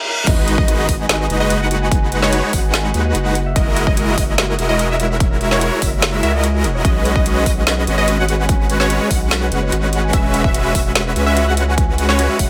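Future bass at 146 BPM in a half-time 4/4 feel, this emotional, lush excerpt sits in G# minor, tuned slightly sharp to A4 = 441 Hz. A ringing, thumb-plucked concert harp opens at 0.0 s with background arpeggios carrying tape echo and sidechain pumping, while a very quiet reverse cymbal rises into the drop. At 0.3 s the full arrangement arrives with a soft impact: huge, bright supersaw chords up front, detuned and layered with a sub octave, pumping through G#m7, F#13, B69 and E69 with tape echo. Beneath them a deep, thick saturated sub bass holds sustained sine tones, and a wave-folded unison pluck adds full-bodied arpeggios in the background with a cassette tape character. A punchy, layered electronic kick drives the trap drum kit, whose woody snare, metallic hi-hats and crash cymbal fill out the groove. Light reverb and digital ambience, with a high-pass filter, give the mix a polished, airy finish.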